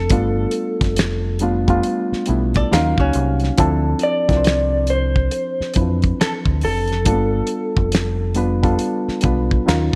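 Heard in a small room, this short cut from a longer piece is late-night, soulful R&B with a neo-soul lean, set at 69 BPM in 4/4 with a swung sixteenth-note feel. A damped 70s drum kit sits up front with finger snaps, hi-hat, a fat snare and a tight kick, while a deep dub fingered electric bass gives a round, punchy low end. A reed electric piano, reedy, worn and slightly out of tune, carries the accompaniment through its built-in speakers with spring reverb. Over it, an electric guitar through a small old amp plays the melody with a dark, slightly broken-up lo-fi tone, harmonic tremolo and slapback echo, stopping at 8.3 seconds. A miked archtop guitar with a clean, hollow-body sound adds a brief second line between 2.6 and 3.6 seconds, as the harmony moves from G7 through Ebm9 and Dm9 back to G7.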